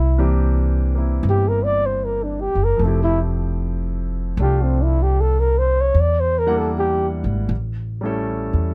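A swing feel on the eighth notes carries this wistful, melancholic jazz ballad at 76 BPM in 4/4, taken from a longer piece. A breathy, dark flugelhorn sings the melody up front with a light vibrato, playing its solo from the opening until 7.1 seconds. Beside it, a woody pizzicato upright bass with steel strings sits close in the mix and sounds through to the end at 8.7 seconds. A warm concert grand piano enters at 0.2 seconds, lower in level, adding natural accompaniment with deep bass. The harmony moves from C9 to Fmaj9, then Em7b5 and A7, and the close, detailed miking with little reverb gives the recording an intimate, dry presence.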